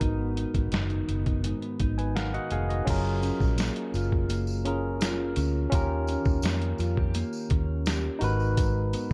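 A dark, hazy production with light reverb gives this short cut from a longer indie pop and bedroom pop piece a mellow, warm glow, moving at 84 BPM in a straight 4/4 in G# dorian. Up front, a trip hop sampler-style drum kit sounds compressed, pitched down and gritty, with a thumpy kick, a medium-tuned snare, hi-hat and crash carrying a tape-warm tone from being re-recorded in a small room. Alongside it, a vintage muted fingered electric bass stays round and punchy, amped and foam-muted, sitting low between E#1 and E#2. A barky tine electric piano played clean through a combo amp, and treated with cassette tape character, shares the accompaniment with a mellow, clean, fingered electric guitar whose analog chorus and warbly pitch drift add a dreamy wobble. The electric piano slips in a fill from 1.8 to 2.9 seconds, and at 2.9 seconds a jingly, bright tambourine enters, distant and set back in a large room, as the harmony moves from G#m7 through F#maj7 and D#7 before returning to G#m7.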